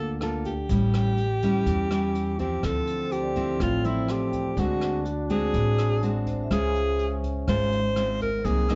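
A breathy alto saxophone opens this short bossa nova passage at once, its subtone melody whispered and intimate, with vibrato and scooped notes, played close and up front over fingerpicked nylon-string guitar and pizzicato upright bass. The guitar has a classical character with audible finger squeak, while the bass sounds woody, growly and thumpy. A jazz kit played with brushes sits mid-forward, with hi-hat, rim click and a boomy kick under a rolled-off top. At 2.6 seconds a mellow trombone slips in behind as a second line, soft in attack and lightly vibratoed, and at 2.9 seconds a dry, metallic vibraphone with medium hard mallets adds ringing accompaniment in the background, its motor off. The mood is romantic and sophisticated at 124 BPM in straight 4/4, moving through rich harmony from Gm9 and A7 to Dm9, D7#11 and Dbmaj7. Light reverb and a dark, warm production keep the whole fragment, lifted from a longer piece, soft-edged and close.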